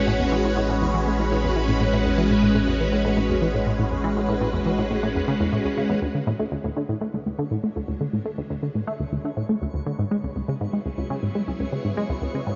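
A tight, driving sequenced synth riff of detuned sawtooth plucks propels this mysterious, cosmic fragment of ambient space music at 121 BPM, set against swirling, vintage string-machine chords soaked in ensemble chorus and phaser, a round, deep analog bass holding A1 until 6.0 seconds, and a faint, twinkling granular shimmer that arrives at 7.4 seconds, all bathed in a lush hall reverb within a dreamy mix whose highs are softened.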